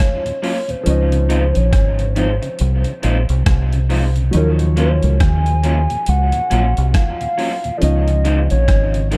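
Smooth and romantic, this lovers rock reggae fragment drifts along with a loose swing under a hollow, woody clarinet-like synth lead that carries the melody with a soft, warbling vintage tone, dressed in chorus and tape echo. A polished baby grand piano sits in the background, joined moments later by a very quiet tonewheel organ with slow rotary vibrato and key click, and by slightly broken-up, lo-fi electric guitar stabs with their own tape echo. Up front, a gritty, pitched-down boom bap kit with a thumpy overdriven kick and rim clicks sits alongside a round, deep dub bass that enters at 0.9 seconds, all within a dark, ambient production.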